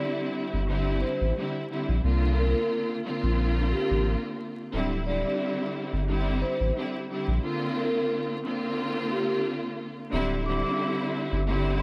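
A soft dub sub bass sits up front from 0.5 seconds, deep and round with a fast attack and sustained notes that anchor this reflective yet tough hip hop excerpt at 89 BPM in D minor. Alongside it, a studio string section carries the accompaniment, bowed and lush with vibrato, portamento and a smooth top, also placed up front. Further back, a vibraphone played with soft mallets takes the melody, its metallic, ringing tone given a slow motor vibrato and a touch of delay while staying close-miked and mellow. The groove has a light swing on the sixteenths, and the harmony moves between D9sus4 and C9sus4 before a new section begins at 10.1 seconds. A small room ambience and vinyl crackle add a dusty texture around the parts.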